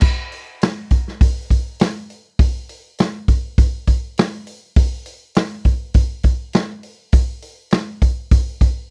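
Rock drum excerpt with a driving, raunchy mood, played on a vintage acoustic kit in a straight 4/4 feel; the kit, made up of crash cymbal, hi-hat, punchy kick and medium-tuned snare, plays for the excerpt's 8.8 seconds. The kit sits up front with a natural, small-room character and a rolled-off top, captured as a dry, close 1970s-style studio recording with little reverb.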